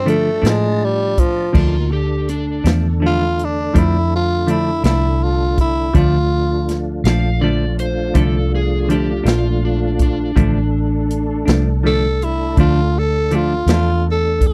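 A dry, close 1970s-style studio sound frames this brooding, mournful slow blues excerpt in 12/8 at 54 BPM in D minor, where a raspy, growling tenor saxophone carries the melody, soloing through the first 1.5 seconds over a Dm chord, as a round, foam-muted fingered electric bass, a punchy big-band drum kit with crash, hi-hat, kick and snare, a clean picked electric guitar with tremolo, and a clear tonewheel organ holding chords through slow rotary speaker and chorus vibrato play from the opening moments, and an overdriven slide guitar playing a second line from 1.6 to 11.6 seconds fills out the arrangement.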